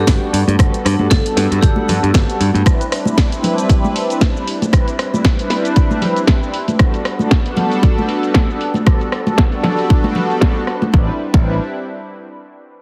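A heavily compressed, radio-like sheen with light reverb frames this sleek, cosmic nu-disco excerpt at 116 BPM, where a smooth, detuned sawtooth pad with chorus and dub echo sustains Gmaj9, Cmaj9/G and Am11 chords until about 11.5 s. A punchy tape-warm kick and a filtered house kit with cracking snare, hi-hat, rim click and shaker drive the swung groove beside soft-handed vintage congas under a filter sweep until 10.9 s, with the kick carrying on to about 11.4 s. A bright, picked electric bass sits up front at the opening and returns near 10.9 s on Am11, and a metallic, ringing vibraphone with fast motor vibrato and dub echo glints faintly in the background for only the first 2.4 s.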